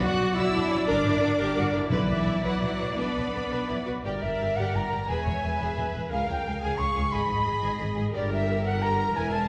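An airy concert flute joins at 4.0 s as a second line alongside lush, vibrato-rich violin sections carrying the melody and a counterline. Beneath them sit smooth violas, bowed cellos and an up-front, soft-attack double bass section, while mellow French horns hold background chords and dry timpani punctuate until 2.4 s, all giving this cut from a longer, swashbuckling adventure film score in B harmonic minor a heroic, straight 6/8 pulse at 117 BPM, heard from further back in a reverberant recital hall.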